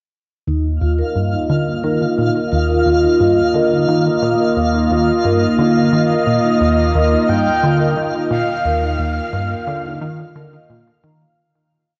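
Ambient, sequencer-driven space music in Eb major at 88 BPM, expansive and cosmic, opening on an Ebsus2 chord as a swirling, phased analog pad, a soft-mallet vibraphone cycling mellow ten-step arpeggios, and a tight, nasal sequenced synth riff repeating a six-step loop that drifts against the bar all start together at 0.5 s, joined by a twinkling granular texture holding a single sparkling high note. A breathy, flute-like synth lead enters at 5.9 s with a free melody carrying vibrato, sitting up front alongside the sequenced riff. The whole short piece is bathed in a huge, wet reverb and fades out from 7.7 s to its close at 11.4 s.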